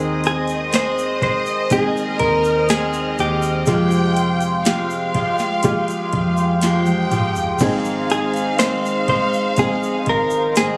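Heard as if captured on a phone in a reverberant club room, this slow, tender and heartfelt pop ballad excerpt puts a bright, compressed clean electric guitar melody up front over woody upright piano, a shimmering retro pulse-width pad with chorus, delayed arpeggios on picked steel-string acoustic guitar, a round, foam-muted fingered electric bass and a distant, lush bowed violin section, while a smooth R&B drum kit with knocking kick and sharp snare enters alongside a grainy tube shaker at 0.2 seconds and plays a fill from 6.6 to 7.6 seconds.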